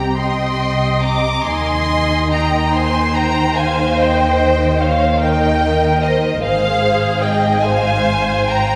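A slow, melancholic and elegiac classical movement for string orchestra in a rubato 12/8, where an up-front violin section carries the smooth, vibrato-rich melody over a second violin line with soft, expressive attacks, a distant viola accompaniment and a close cello section with double basses beneath, all bowed and lush as the harmony moves from Cm through Eb to Ab6 at 6.4 seconds, wrapped in the long bloom of a wet concert hall.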